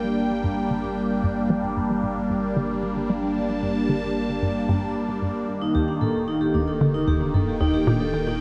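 A swirling, phased analog pad of sustained chords opens this expansive, cosmic excerpt of sequencer-driven space music at 113 BPM in 4/4, joined from the start by a hollow, bouncy square-wave pluck riff with chorus, phaser and tape echo and a round, deep analog bass fading in far back in the mix, as the harmony moves from G minor to E-flat at 5.5 seconds and a metallic, ringing vibraphone enters up front at 5.6 seconds with tape-echoed arpeggios, the whole mix set in a wet concert-hall reverb.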